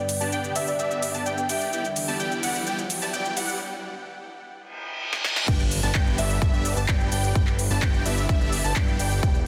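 Driving straight 4/4 at 128 BPM in G major, this uplifting, triumphant festival progressive house excerpt opens with a mellow soft-mallet marimba melody and a lush, warbling chorused pad, then builds with crisp high-passed hats, cabasa, handclaps, snare and crash from the big-room kit, a catchy plucky unison lead arpeggio, bright phased supersaw chords with delay, and very quiet risers and a reverse cymbal through a filter sweep and a short break, before the drop at 5.5 s lands on an up-front punchy kick and a fat, nasal, saturated analog bass under pumping sidechain and light digital reverb.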